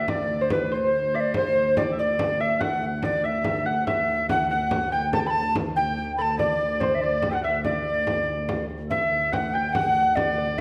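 Medieval dance in 6/8, festive and ancient in mood, in which an airy, chiffy tenor recorder with a straight, tongued tone carries the melody up front while a bright, distant folk-style shawm and a delicate, fingerpicked lute on doubled nylon strings, set in the background, play second lines, a shimmering, soft string-celeste organ holds a low D drone, and a hard-handed, compressed and saturated frame drum supplies the percussion, all heard in a wet recital-hall reverb, with a new section arriving at 8.9 seconds.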